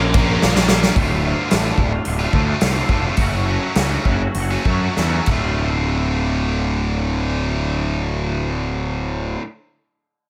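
Dark and angsty, this short cut of quiet-loud alternative rock in 4/4 at 93-111 BPM opens on a Bbm riff from a bright distorted guitar in the background and a very quiet, scooped, double-tracked high-gain guitar, both dropping out at 1.0 seconds, while a tight, picked distorted guitar and a growly, fuzz-driven picked bass stay up front throughout, a huge arena drum kit with punchy kick and big natural room sound plays fills and stops at 5.4 seconds, and a clean, twangy guitar with ensemble chorus adds background arpeggios from 1.0 seconds as the tempo slows through Dm and F#m, all in a dry mix with little reverb.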